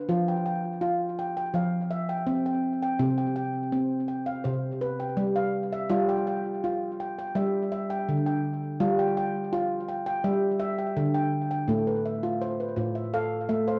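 In a straight 4/4 at 83 BPM, this gentle, hypnotic world meditation piece, cut from a longer work, features a solo handpan of ringing, bright, airy nitrided steel sitting up front and spanning A2 to G5, colored by cassette tape and tape echo in a wet studio reverb with a homemade cassette character, moving through F5, C5 and G5 before settling on A minor at 11.7 seconds.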